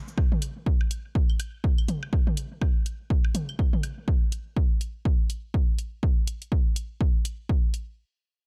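A dry, gritty hardware sound with little reverb frames this short, quirky and cool slice of minimal techno, cut from a longer piece. At 123 BPM in 4/4 with a 58% swing on the sixteenths, a punchy analog kick drum sits up front from 0.2 seconds, carrying a tape-warm body. An analog electronic hi-hat joins at 0.4 seconds and runs at a lower level beneath the kick. Electronic woodblock, toms and claves add an overdriven, produced edge, passed through analog delay, before dropping out at 3.9 seconds. The remaining moments rest on the lean pairing of kick and hat in a single unbroken section.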